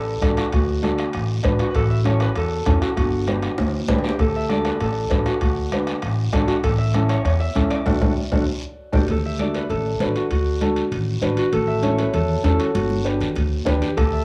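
Recorded on cassette with a small-room, homey ambience, this festive, danceable cumbia excerpt puts a ringing, fingerpicked concert harp melody and a woody pizzicato upright bass with steel strings up front, over an intimate upright piano with audible action noise, a soft-beaten, distant bombo that drops out at 9.0 seconds, high-tuned congas and metal-shell timbales in the background, and a raspy guiro close by, with drum fills and a band accent from 7.9 to 9.1 seconds.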